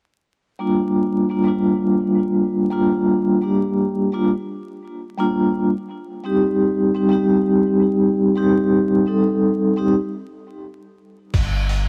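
Dark and melancholic, this trip hop fragment opens with a mellow, ringing vibraphone played with soft mallets, shaded by tremolo, tape echo, a filter sweep and cassette tape as it moves from Gm7 to Cm/G until 9.9 seconds; then, after a brief stop, a round, deep sub bass and a compressed, pitched-down, gritty sampler-style drum kit with a thumpy kick, hi-hat and crash enter at 11.3 seconds, all in light reverb over a homespun cassette recording with vinyl crackle.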